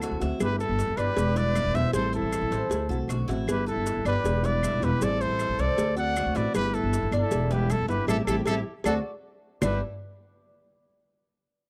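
A sunny Cuban son and guajira groove in G major at 156 BPM opens at once, with a breathy, whispered trumpet carrying the melody up front over a woody pizzicato upright bass and an airy, distant flute tracing a second line in the background. A full-bodied, fingerpicked nylon-string guitar with audible finger squeak supplies the accompaniment, while a metallic, double-strung tres picks arpeggios through a slapback echo, all circling G6, Em7, Am7 and D7 as round, low-tuned cowbell and bongos, dry claves and grainy maracas sit softly behind. This close, dry 1970s-style studio recording has a small-room feel, and the band hits an accent from 8.1 seconds with a drum fill before landing on G5 at 9.6 seconds.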